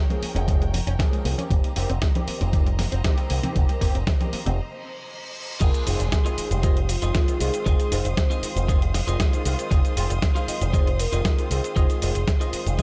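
Gritty, tape-warm sampler-style drums re-recorded in a large room give this groovy, sensual nu-disco excerpt its dusty character, with a thumpy electronic kick and a bright, envelope-filtered picked bass up front, while a distant bowed string section holds lush, pumping chords throughout. Early on, a detuned unison pluck plays arpeggios with sidechain pumping and delay, and hard-handed congas and tambourine sit in the background, alongside a barky, overdriven tine electric piano played through a combo amp. After a brief break at 4.6 seconds, a very quiet reverse cymbal enters at 4.8 seconds, and the drop at 5.6 seconds lands with a soft impact and brings in a round, dark octave-layered synth lead with chorus, phaser and delay, plus a clean, scooped electric guitar riff.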